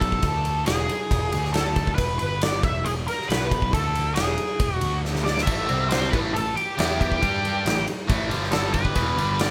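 A raunchy, swaggering blues rock power trio cut with a southern rock edge opens at 137 BPM in a straight 4/4, with a dark octave-fuzz lead guitar carrying the melody through wah and distortion alongside fuzzed, overdriven picked electric bass and a big acoustic rock drum kit. The lead sits up front, while the bass has a warm, direct-and-amped growl underneath. The drums ring out in a bright stone room, with a punchy kick, a medium-tuned snare, crash and ride cymbals, all placed close in the mix. A drum fill at 5.0 seconds ushers in a biting, double-tracked overdriven rhythm guitar at 5.5 seconds, which picks out a riff over power chords moving among A5, C5, G5 and E5. The band sounds like it is playing live in one room with light reverb, and the clip is cut from a longer piece.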